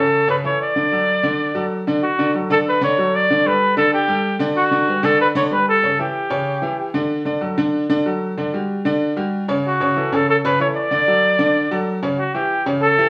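Latin music with a joyful, danceable mood. Over a straight 4/4 feel, an up-front flugelhorn with vibrato and a vintage, pop-styled tone carries the melody, bathed in plate reverb. It drops out at 6.9 seconds and returns at 9.7 seconds, while a clear, slightly worn grand piano, equally forward, accompanies throughout this short fragment cut from a longer piece, set in a small studio room.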